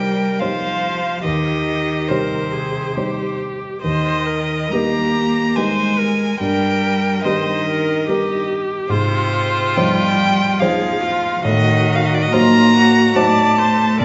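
An up-front, airy-bowed violin carries a tender, intense melody with vibrato over a cello second line full of expressive portamento, a focused viola and a dark, worn baby grand piano with audible action noise, in this slow, rubato romantic chamber excerpt in 3/4 at 71 BPM, moving from C minor through E-flat major to a diminished chord in a reverberant recital hall.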